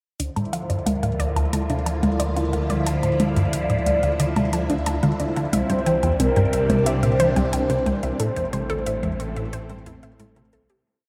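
Bathed in a vast, echoing reverb, this hypnotic, mysterious piece of ambient, sequencer-driven space music sets a tight, driving sequenced synth riff and a fat analog bass holding the roots beneath swirling, vintage phased string-machine chords, a lush unison pluck whose 9-step arpeggio drifts against the bar under a filter sweep, a round, horn-like synth lead singing a free melody with vibrato, and a booming analog drum machine ticking metallic hats and high toms, all moving through Dm, C and Am before fading out from 7.3 seconds.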